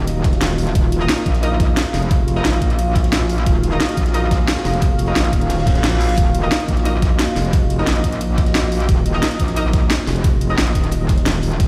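A straight 4/4 groove at 177 BPM drives this futuristic, mechanical stretch of dark technical drum and bass. An overdriven electronic kick and an up-front drum and bass kit with a cracking snare lead it, over a very quiet, gritty breakbeat kit. Beneath them sits a metallic, distorted wobble bass, while a moody, detuned analog pad pumps alongside a deep ambient pad held on F5. Punchy orchestra-hit-like synth stabs carry digital delay, and a reverse cymbal sounds from 5.6 to 6.2 seconds, the whole set in a light stone-room reverb.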